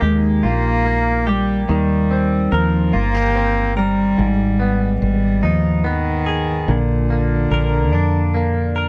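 Romantic and swaying, this slow pop excerpt in 6/8 at 48 BPM sets a rich, floating bowed cello melody over a double-tracked clean electric guitar with a bright, twangy edge and a woody fretless electric bass that sounds round and punchy through analog chorus, all moving from Ebadd9 through Cm7/Eb and Abm to Bb in a dry, close 1970s-style studio sound.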